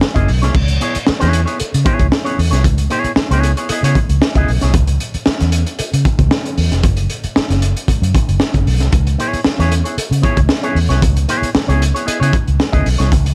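A straight 4/4 funk groove at 115 BPM in C# minor, cool and funky, rides on a crunchy, gritty breakbeat kit with a punchy kick, high-tuned snare and dark cymbals, beneath a round, foam-muted vintage fingered bass that sits loudest in the dry mix, while a bright, twangy electric guitar through an envelope filter accompanies over C#m7, dropping out at 4.7 seconds and returning at 9.2 seconds in this short cut from a longer piece.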